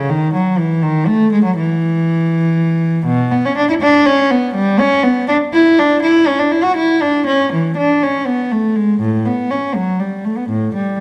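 A classical, baroque-style suite movement for unaccompanied cello, this serene, flowing excerpt moves in a rubato 12/8 at about 81 BPM in dotted quarters and settles into D major from 3.1 s, with a single bowed cello playing throughout, close and up front, from A2 to F#4 in a period style whose dark, nasal gut-string tone and airy bow sit in a moderate recital hall reverb, tuned to A4 = 439 Hz.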